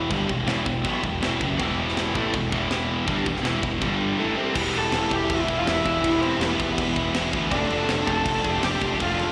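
A very quiet, lush string section holds bowed chords beneath a bright, high-gain guitar riff, a double-tracked overdriven semi-hollow guitar and a growly fuzz bass from the first moment, with a tight, high-tuned metal kit joining at 0.1 seconds; a second, very quiet high-gain guitar slips in at 1.6 seconds, and at 4.8 seconds a distorted lead guitar melody and a bell-like, slapback-echoed tine electric piano line arrive in this epic, relentless heavy metal passage at 162 BPM in E phrygian, cut from a longer piece and heard through a venue's PA with recital hall reverb.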